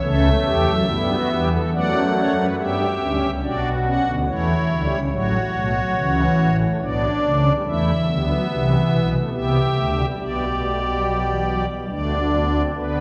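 Driving yet contemplative, this 13-second excerpt of a baroque-style four-part fugue in G major moves at 71 BPM in 3/4, with a solo pipe organ on shimmering, soft string celeste stops sitting up front in a romantic voicing that spans A1 to F#5, while a wet church reverb of 2.8 seconds and a small-room ambience surround its chords as they pass from A7/C# through Gmaj7, F#m7/A and Bm before settling on D5 near 11.9 seconds.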